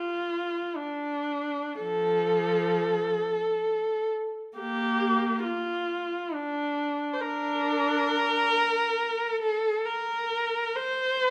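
A rich, bowed solo viola sings a lyrical, nostalgic classical line in free time and B-flat major, tuned to A4 = 437 Hz, with expressive vibrato and portamento ranging from F3 to C5 across this 11.3-second fragment of a longer piece, captured by close, detailed microphones within a moderate recital-hall reverb.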